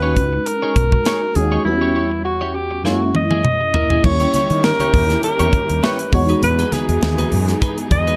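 A breathy alto saxophone carries the melody up front with scooped subtone notes over glassy, bell-like FM electric piano, a round fretless bass, a compressed clean guitar riff shimmering with chorus and a tight, airy funk kit, whose fill near 2.8 seconds leads to lush, dark strings and very quiet conga from 4.0 seconds in this short cut of glossy, urban 1980s jazz-funk pop with a light swing.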